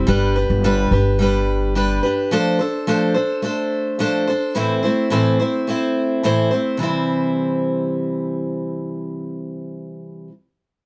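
Light reverb surrounds this sunny, carefree pop cut from a longer piece, moving at 107 BPM in a straight 4/4 in C major. A picked steel-string acoustic guitar with a warm, auditorium body carries the accompaniment up front throughout, spanning A2 to C5 over G, Dm7/F, Am and then C at 6.8 seconds. A woody, growly pizzicato upright bass adds a thumpy G1 at the start before dropping out at 2.0 seconds.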